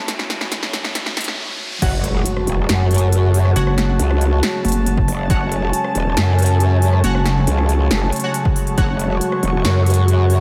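Chaotic and aggressive, this heavy wobble dubstep excerpt in F# minor runs at 138 BPM with a half-time feel, opening on a brief build-up where a very quiet, dark grand piano melody, an overdriven big-room dance drum kit fill of punchy snare and crisp hats, and a background riser play over dark, bowed strings and an airy, breathy pad, all of it soaked in a dreamy church reverb, before a stop at 1.4 seconds. The drop lands at 1.8 seconds with an impact, a punchy overdriven electronic kick, and an up-front growling, wobbling bass, while bold, detuned orchestra-hit-like synth stabs ring in the background through built-in reverb and delay. From 3.6 to 7.5 seconds a mellow, pulsing pluck wobble bass adds weight on F#, and the strings and pad pump against the sidechain beneath the F#madd9 chord.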